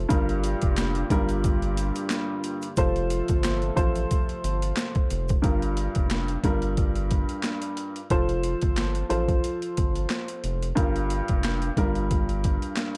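A dark, digitally ambient boom-bap hip-hop excerpt with a reflective mood: gritty, overdriven sampler-style drums with a thumpy kick, high-tuned snare, hi-hat and handclaps sit up front beside a smooth, vintage grand piano tinted with cassette tape over Gm7 and F chords, while a round, deep analog bass holds the low end until 12.6 seconds, and a nasal, detuned pad in the background and a grainy, very quiet shaker both stop at 5.4 seconds.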